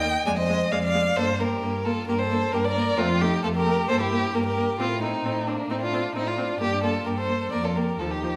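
A reverberant recital hall surrounds this short string quartet passage, giving the bowed instruments a lingering bloom. It is a quick, classical-period movement in B-flat major at 132 BPM in 4/4, cut from a longer piece, and its rubato phrasing lends a dramatic, restless mood. The first violin carries the melody with a rich, smooth and even tone heard close, while the second violin sits up front, playing its second line with a soft attack, vibrato, portamento and expressive shading. Beneath them the viola supplies a full-bodied, steady accompaniment, and the cello, also close and up front, anchors the bass with a warm, singing sound and its own portamento. The four players sound together from the opening to about 8.4 seconds, moving through harmonies such as Fm6, Gmadd9 and a rootless Bbmaj9/A before settling on Bb5/F.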